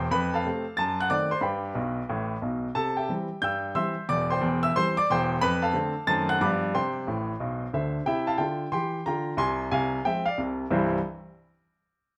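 A brisk swung 4/4 at 181 BPM drives this exuberant, playful stride jazz excerpt in C major, where a solo baby grand piano, polished and up front, spans its low bass to its bright upper register, drops in quick fills at 1.8 and 7.1 seconds, and moves through chords such as F#dim7, F6, G7, C7 and Fm/C inside a moderate studio reverb.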